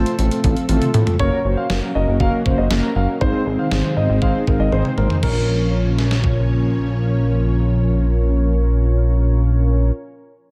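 This synth-pop excerpt moves in a straight 4/4 pulse, set by a clean 12-bit drum machine with a thumpy kick and a medium-tuned snare, plus hi-hat, crash and toms, sounding as if re-recorded in a large room and placed up front, with fills at 0.7 and 4.7 seconds. Beneath it, a chorused synth bass carries the low end with a glossy, retro pulse-and-sawtooth tone and a filter sweep. A dark, brassy synth brass patch, detuned and touched with vibrato and chorus, plays the accompaniment, while a vintage string machine cello sound with a sub octave and ensemble chorus holds sustained chords in the background. At 1.2 seconds a concert grand piano enters with an intimate second line, its action noise audible under a diffuse ambient delay, and it drops out at 6.7 seconds. The harmony moves from F/A through Gb and Ab before settling on Bb minor, giving the piece a cool, melancholic mood within a light digital ambience.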